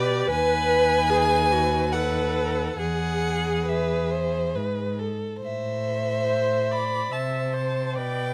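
The sound is dark and warm, with light reverb around closely placed strings, and the cello sits up front. This is an elegiac, melancholic slow romantic movement for string quartet in triple metre, its uneven beats shaped by rubato, heard in a short passage cut from a longer piece. The first violin carries the melody with a rich, smooth and even bowed tone and vibrato, while the second violin plays an expressive second line with soft attacks, portamento and vibrato. The viola adds a clear, focused accompaniment, and the cello anchors the bass with vibrato. All four bowed parts sound together throughout, passing through B7/D#, E and Am harmonies.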